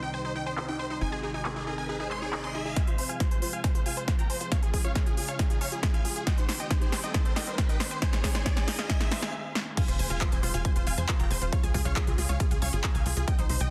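Uplifting trance at 137 BPM in F minor, driving and emotional, where a huge, euphoric supersaw lead carries the melody with dub echo and low-pass filtering over a silky, chorused analog string pad and a lush unison pluck arpeggio in the background, all three breathing with sidechain pumping. A dark, tight sequencer bass drops out at 2.7 s, just as a punchy, up-front electronic kick enters at 2.8 s. Background risers and impacts and a layered big-room kit of crash, handclaps, crisp filtered hats and punchy snare build until the drop at 9.8 s, with the bass returning at 9.9 s, all within a dense, heavily limited, nearly dry mix.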